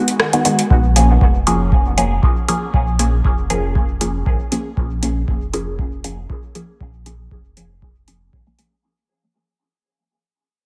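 A heavily compressed, radio-like sound with light digital ambience frames this nocturnal, meditative dub techno cut from a longer piece, moving at 118 BPM in Bb phrygian. A very quiet, warbling tape-like pad sounds briefly from 0.1 s to 0.7 s over Abm7 before the music settles on Bbm7. Muted, detuned dub chord stabs sit up front with phaser, pumping and dub echo under a filter sweep. A booming analog drum machine with metallic hats and rim clicks plays from 0.1 s and is joined at 0.7 s by a deep electronic kick and a round, sine-like sub bass, as the whole fades out through to 8.8 s.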